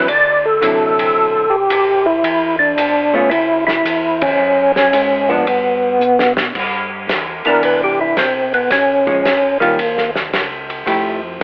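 A fat, percussive tonewheel organ sits up front with the melody in this bluesy, soulful soul jazz organ trio excerpt, its key click, third-harmonic percussion and chorus vibrato running through a slow rotary speaker and cassette tape grit. Beneath it, a dark, hollow-body archtop guitar plays clean, picked accompaniment. A mellow, round second tonewheel organ holds down the bass in the background, also through a slow rotary speaker. A small-room acoustic soul kit with a tight kick, medium-tuned snare, dark cymbals and a rolled-off top swings in 4/4 across hi-hat, ride, snare and crash, and the band hits an accent together at 4.1 seconds. A drum fill leads into the second section at 6.5 seconds, where the organ takes a solo, all under light reverb and the telephone-like sound of a home cassette recording.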